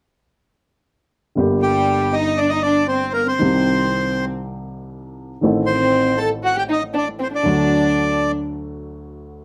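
A woody upright piano with a short sustain opens this dramatic, passionate tango at 1.4 seconds, setting a rubato 118 BPM pulse in G harmonic minor over a Gm, Cm, Adim and D progression. Moments later, an up-front, reedy, dark bandoneon carries the melody while a floating, sul tasto violin section adds a pure, soft-attack second line beneath it. Both stop at 8.3 seconds, leaving the piano to close this passage from a longer piece at 9.4 seconds, captured with close, detailed microphones and light reverb.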